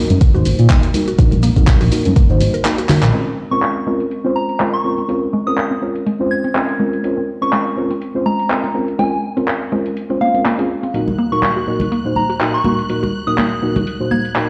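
A swung 4/4 groove drives this moody, deep house fragment, cut from a longer piece. An up-front, gritty electronic kick and a dark, smooth synth bass anchor the opening alongside hard-handed bright congas. A tape-soaked drum kit of handclaps, hi-hat and shaker sits under low-pass filtering, with vintage sampler grit. Throughout, a woody, round mallet-like synth pluck spins chorused arpeggios through cassette wobble and tape echo, while nasal, full-bodied chord stabs pump against the beat. After the kick drops out and a drum fill and band accent land, the bass stops at 3.1 seconds and a pure, gentle FM bell melody enters at 3.5 seconds with analog delay, as a filter sweep runs over the arpeggio. A lush, expressive violin section slips in faintly at 10.9 seconds and the congas return, all set in a plate reverb and stone-room ambience with a cassette-tinged, big-system character.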